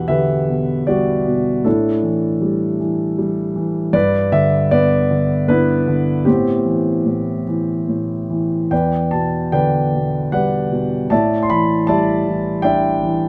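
Classical solo piano in a dark, reflective mood, this 13.3-second excerpt finds a warm concert grand alone and up front, moving in a rubato 3/4 at roughly 72-80 BPM through Em9, A7sus4, G6 and Am9 harmonies from E2 to C6, its deep bass and long sustain captured by close, detailed microphones with light reverb.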